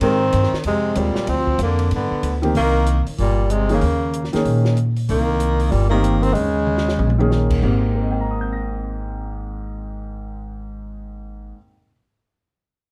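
Sophisticated and warm, this swinging small-group jazz excerpt moves at a brisk 189 BPM in Ab major, with a breathy tenor saxophone carrying the melody in a soft, subtoned voice with light vibrato and scooped notes, bathed in plate reverb, while a bright baritone saxophone sings a second line beneath it. A woody upright piano, up-front pizzicato upright bass and a compact cocktail kit with dark cymbals, a high-tuned snare and a tight kick drive the groove, and a drum fill at 6.7 seconds closes out the horns and drums by 7.6 seconds. Piano and bass carry on alone, the bass to about 11.5 seconds and the piano to about 11.9 seconds, returning to the opening Abmaj9 in a moderate club reverb with a dark, warm production.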